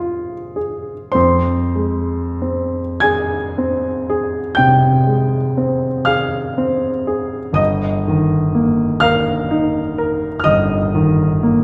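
A lone baby grand piano opens this brief cut from a longer romantic nocturne, its clear, natural tone and short sustain sitting up front within the generous reverb of a recital hall heard from further back in the room. Moving in a slow, rubato 12/8, the yearning, melancholic solo ranges from G1 to Ab6. The harmony shifts once, at 7.6 seconds.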